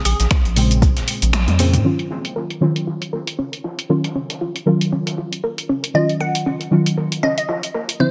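A rubbery, nasal square bass pumps up front through the opening 1.8 seconds of this moody deep house excerpt, accompanied by an overdriven deep kick, a snap-and-shaker kit, a gritty sampler-style kit in the background, dark chorused chord stabs with 12-bit grit and dub echo moving from Bbm9 to Ebm9, a glassy wavetable pluck melody, and from 1.8 seconds a soft, round arpeggiated pluck under a filter sweep, all set in a moderate plate reverb.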